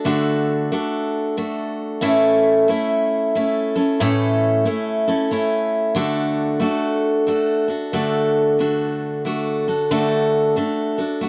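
Country in a lilting three-four swing, sunny and nostalgic, this short excerpt from a longer piece features a lone picked steel-string acoustic guitar, bright and full-bodied with a dreadnought's depth, sitting up front. It moves through a simple D to A and back to D progression, shifting into a new section at 7.9 seconds. The sound is dry and close in a 1970s studio style, touched with light reverb.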